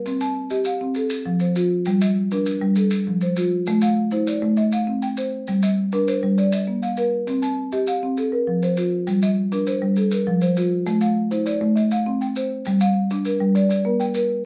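Warm and hypnotic, this short southern African traditional piece cut from a longer work sets a woody, round marimba with soft mallets up front, playing arpeggios in an interlocking mbira-style cycle in a straight 12/8, while grainy maracas sit quietly behind it in a moderate reverb that places the listener further back in the room, before a brief new section arrives at 12.7 seconds.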